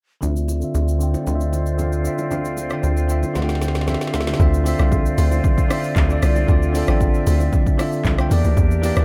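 A straight 4/4 amapiano groove at 115 BPM drives this late-night, deep passage in D minor, cut from a longer piece. A punchy, layered deep house kit sits up front, with its woody snare, dark hi-hats, kick, handclaps, rim click and shaker, while very quiet congas and bongos ring with soft hands behind it. A bell-like tine electric piano carries the accompaniment over a Dm9 chord, joined by a small flute group holding airy, vibrato-tinged sustained chords. Both pass through a low-pass filter, and a filter sweep runs through the opening half. A funky, evolving analog bass with a plucky sawtooth and ring-modulated tone holds a low D until 4.3 seconds. After a drum fill, the drop arrives at 4.4 seconds, where a hollow, bouncy log drum bass takes over the low end, and the harmony turns to Em7b5 at 8.3 seconds, all within a digital ambience.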